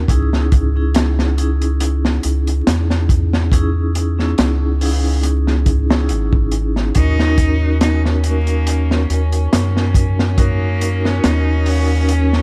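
Trip hop with a smoky, hypnotic mood, moving at an unhurried, lightly swung stride in this short cut from a longer piece. A crunchy breakbeat kit sits up front with a punchy kick, a high-tuned snare and hi-hat, its gritty, saturated tone softened by a rolled-off top and a small-room feel. Beneath it, a round analog bass with a deep, wave-folded, tube-saturated sound holds the low end, while a close-miked vibraphone with medium hard mallets rings out a metallic accompaniment through tremolo, fast motor vibrato and tape echo over a Dbmadd9 harmony. At 6.9 seconds the music shifts to Ebm7 as a nasal, gut-string chamber section slips in far in the background with sustained bowed chords, and at 7.0 seconds a single clear cello takes the melody with smooth, even vibrato and its own tape echo. The dry, dark production is dusted with vinyl crackle.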